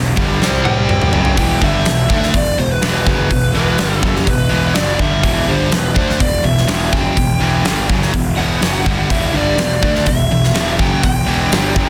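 Hard rock in E minor at 124 BPM, this aggressive, heavy excerpt runs just under 12 seconds and is cut from a longer piece. Two rhythm guitars drive the riff from the start, an overdriven semi-hollow guitar with a hollow-body warmth and a tight, bright distorted guitar, both sitting in the background. A fuzz picked electric bass with overdrive adds a growly, punchy low end beneath them. The huge arena drum kit comes in at 0.2 seconds, up front with a fat snare and punchy kick in a big room, and plays a fill from 0.4 to 1.4 seconds as the harmony moves from C5 through F#5 to settle on E minor. A lead guitar through a small cranked amp enters at 0.7 seconds, its dark, overdriven tone carrying the melody above the riff. Light reverb and a dense, heavily limited modern master keep the whole sound thick and loud.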